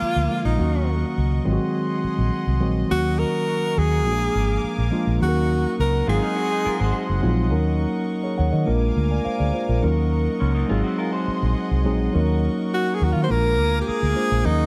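This soul excerpt opens with a breathy tenor saxophone carrying the melody over mellow tine electric piano, a round, foam-muted electric bass sitting up front, and a bowed string section adding sustained chords with a reedy, gut-string tone, all at 104 BPM in Eb dorian with a cinematic, silky mood. The close-miked saxophone, touched with tape echo and vibrato, plays until 7.2 seconds and returns at 12.7 seconds. Between 6.1 and 12.0 seconds a slightly broken-up, lo-fi electric guitar riff appears, while light reverb and studio ambience frame the cycling Ebm7, Ab7 and Bb7 chords.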